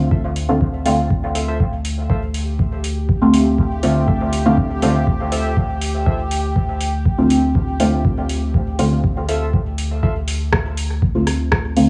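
A deep, mellow chord stab sits up front with chorus, phaser and dub echo, pumping over a round sub bass and tape-warm electronic kick in this cavernous, meditative dub techno excerpt at 121 BPM in D minor, joined by a booming analog drum machine with metallic hats and rim clicks, warbly lo-fi synth keys playing a nostalgic riff from 0.1 seconds, and a bubbling, resonant stepped-filter texture from 2.4 seconds, all set in a gritty cassette sound with echo chamber reverb.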